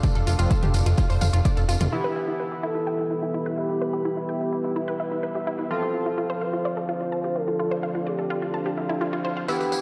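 A driving, hypnotic melodic techno excerpt opens on a bright, warbling unison-pluck arpeggio with diffuse delay and sidechain pumping, set over a layered, tape-warm electronic kick, analog drum-machine hi-hats and toms, a jingly tambourine and a deep, moody chorused pad in the background, soon joined by a fat, up-front analog bass and edgy sync-sweep polysynth stabs; the kick drops out at 1.5 s, and at 1.9 s the drum machine, tambourine and bass fall away as a smooth, nasal synth lead with vibrato and analog delay carries the melody over a filter sweep on the arpeggio, the tambourine briefly returning at 9.5 s, the whole mix soaked in a dreamy, lush hall reverb.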